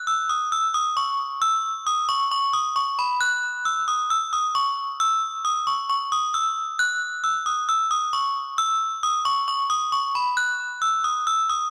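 A solo metallic FM bell rings out from the start, bright and up front, its inharmonic tone striking fast and decaying into a long tail, thickened by chorus and analog delay as it sits high between B5 and F#6. The mood is dark and hard-hitting: a half-time hip hop feel at 134 BPM in C# minor, with the opening phrase returning at 3.2 seconds. The sound is dry and gritty, carrying the grain of cassette tape, in this short cut from a longer piece.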